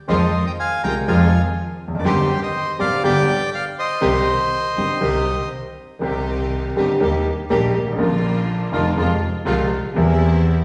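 From the first moment, a reedy, close-miked bandoneon carries the melody of this sultry, dramatic tango fragment. It sounds dry and up front over a concert grand piano whose deep bass and short sustain give the accompaniment a present footing. A single player on bowed double bass adds a rich, expressive low line with vibrato, soft attack and portamento, while a symphonic string section supplies biting, intense stabs with lush ensemble vibrato. The feel is rubato in 4/4, and the harmony moves from Fm7 through Cm/G and G to Cm. The bandoneon stops at 5.5 s, and a second section begins at 6.0 s, with piano, bass and strings carrying the passage through Eb, Bb and Fm to a closing C7/E. A scoring-stage reverb suggests a church or concert hall around this passage, which is cut from a longer piece.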